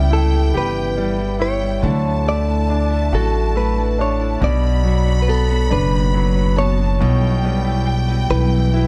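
A six-eight pop ballad in D major at a swaying 46 BPM, this heartfelt excerpt moves through C#m7b5, Dadd9, Bmadd9 and Emadd9/B in a small, dark room, with a woody, thumpy pizzicato upright bass up front, a clear, polished baby grand piano accompanying, a clean, picked electric guitar carrying the melody from the background, a bright, scooped second electric guitar with ensemble chorus playing arpeggios, and a lush, bowed violin section adding a smooth, vibrato-rich second line above.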